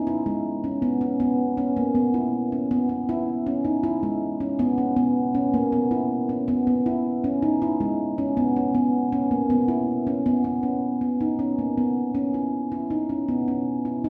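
Urgent yet pensive, this short contemporary instrumental passage is cut from a longer piece and moves at a brisk 159 BPM in an unusual 5/4 metre with a straight feel, set in C# dorian. A solo handpan carries the whole performance from 0.1 to 14.1 seconds, staying within a compact range from G#3 to E4. Its stainless-steel tone, sounded with the fingertips, comes across as dark, smooth and ringing, with a meditative quality. The instrument sits up front, though the listener seems placed further back in a recital hall whose wet reverb, lasting about 1.4 seconds, lets each note bloom into the space. The music shifts into a new section at 10.6 seconds and carries on to the close of the clip.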